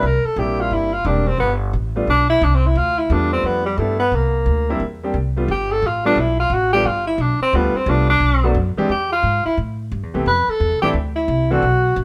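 A brisk swing at 176 BPM in 4/4, with a moderate lilt on the eighth notes, drives this playful small-group jazz clip in the swing and bop tradition, cut from a longer piece and centred on G mixolydian. A tenor saxophone carries a solo throughout the 12 seconds, its tone punchy and forceful with vibrato and scooped notes, heard up front yet with a distant, roomy quality. Beneath it, a clear concert grand piano with deep bass supplies accompaniment until 11.6 s, while a pizzicato upright bass on gut strings gives a woody, thumpy pulse from the low register. The harmony moves between C7 and G7 before turning through Bm7, E and Am7 to D7 near the close. Light reverb gives the group a natural sense of space.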